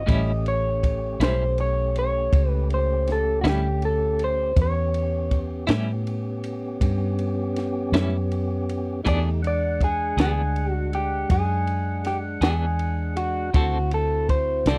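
A slightly broken-up electric guitar through a small old amp carries the lead melody up front in this soulful, gritty slow blues, set in A mixolydian at 54 BPM in a straight 12/8, over a dark, small-room cocktail drum kit with a high-tuned snare, tight kick and ride cymbal. A round, punchy, foam-muted vintage electric bass sits up front in the mix, while a lightly overdriven tonewheel organ holds sustained chords through a slow rotary speaker and a clean, compressed electric guitar with tremolo adds picked accompaniment. The dry, close 1970s-style studio sound frames a passage cut from a longer piece, moving from A7 to E7 at 9.1 seconds and to D7 at 13.5 seconds.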